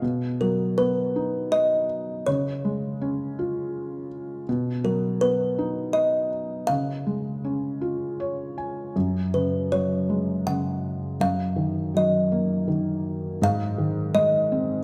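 A soft, felt-muted upright piano opens this gentle children's lullaby, and a woody, thumb-plucked kalimba carries the melody from 0.4 seconds. The tempo sits around 81 BPM in a rubato 3/4 in F# major, tuned to A4 = 442 Hz, with a tender mood throughout. Both parts sit up front: the piano's mellow, intimate accompaniment spans from low F#2 to G#5, while the kalimba's short, warm, solid-board notes stay between A#4 and F#5 and carry a boxy small-room character of their own. The harmony rocks between B and C# at first, and a brief felt piano fill from 7.8 to 9.0 seconds leads into a second passage that moves through F#sus2, D#madd9/F# and G#. Close, detailed microphones capture the pair inside a wet recital hall reverb, and the excerpt ends at 14.8 seconds as part of a longer piece.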